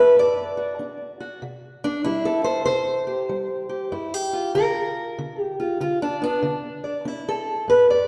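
Swung eighth notes in a steady 4/4 give this short acoustic country blues fragment a rollicking, gritty strut from the first beat. A single fingerpicked steel-string acoustic guitar carries it alone, its boxy, parlour-sized tone sitting up front and ranging from low G2 up to D5. The harmony moves from D to a bare C5, then a G7 voicing at 3.9 seconds, before settling on a D5 shape. A generous hall-like reverb with a long tail, as if captured in a church or concert hall, surrounds the close, warm guitar with a wet sense of space. The instrument is tuned slightly below standard concert pitch, and the passage runs just 8.1 seconds, cut from a longer piece.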